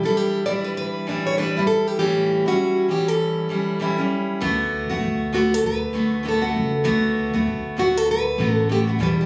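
A carefree, easy-going slice of acoustic pop, this short section cut from a longer piece moves at a relaxed pace with a gentle swing on the sixteenths. A picked plugged-in steel-string acoustic guitar carries the melody up front, its boxy tone marked by audible finger squeak. Beneath it, a second picked steel-string acoustic guitar supplies a full-bodied accompaniment that spans from low to middle register. An upright bass joins at 4.4 seconds, its pizzicato notes woody and thumpy. The harmony moves from Em7 to A7 and settles on D6. The sound has the feel of a phone recording made in the room, with light club reverb around the players.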